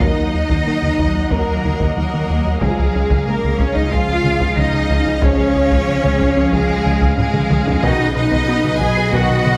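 A tense, brooding hybrid orchestral and electronic film score cue at 92 BPM, moving from Ebm to Db at 2.6 seconds and B at 7.8 seconds, with a distant symphonic violin section carrying the melody over a close, expressive chamber violin line, lush viola accompaniment, a focused cello section and a clear double bass section in the background. A rubbery, hollow square bass riff and a soft, round pluck playing arpeggios sit alongside an ethereal, airy pad and mellow French horn chords. A vintage, band-limited taiko ensemble with heavy sticks drives the rhythm and plays a fill from 7.2 to 7.8 seconds, all set in a moderate scoring stage reverb.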